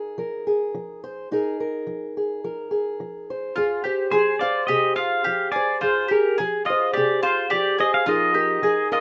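This acoustic folk piece, cut from a longer work, moves at a straight 107 BPM in 4/4 in F dorian, with an intimate, melancholic mood. An old ladder-braced acoustic guitar, fingerpicked and up front, carries the accompaniment throughout with a dark, woody, boxy tone and the character of old strings. At 3.6 s the harmony shifts from Bb7sus4 to Fmadd9, and a mellow, round mandolin enters with picked double-string arpeggios. The electric pedal steel guitar arrives at 4.1 s, played with fingerpicks and slide. Its warm, clean, compressed sound and volume swells give a second line that carries a solo above the other parts. The chord returns to Bb7sus4 at 8.1 s, and light reverb surrounds the small group.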